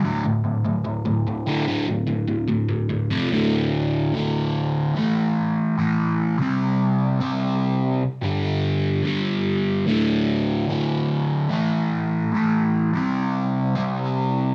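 Menacing, driving rock at 146 BPM, this short cut from a longer piece features a lone overdriven semi-hollow electric guitar, dark and picked, double-tracked and up front with phaser and cassette tape grit, moving through power chords from D5 to F5 before a new section at 3.3 seconds cycles D5, A5, C5 and G5, all in a small home room with light reverb and a slightly flat tuning.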